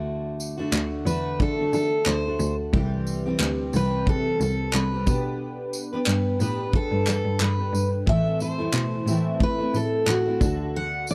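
A lightly swung sixteenth-note groove in 4/4 carries this easy-going, sunny acoustic pop fragment, with a double-tracked fingerpicked jumbo guitar and a bowed cello, warm and expressive with vibrato and portamento, moving through D, C, G, Am and back to D. A loose indie kit with a punchy kick, tambourine and handclaps joins at 0.4 seconds, and a full-bodied picked steel-string guitar takes the up-front melody from 1.1 seconds. The sound is dry and close in a small room, with a 1970s studio character and lossy compression artefacts.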